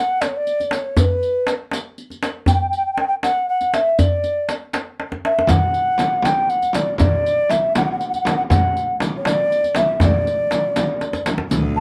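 A mellow alto ocarina carries the melody from the opening moment in this festive Persian modal ensemble piece, its clay, airy tone sitting up front with vibrato and tongued, expressive phrasing, though it has a slightly distant quality. The music moves in 6/8 at 80 BPM, counted in dotted quarters, with a straight feel in the D dastgah mahur. The tombak drives the rhythm up front and prominent, deep and compressed with a saturated edge under hard hands, while the riq adds bright jingles with a vintage, band-limited character played with soft hands. After a drum fill at 5.0 seconds, a frame drum joins at 5.5 seconds, large, deep and distant as if heard from a big room. Just as this short, warm section draws to a close at 11.5 seconds, a bright, intense solo cello enters with a bowed low D drone, its airy bow and light vibrato captured close. Light reverb and detailed close miking give the recording clarity, and it is cut from a longer piece.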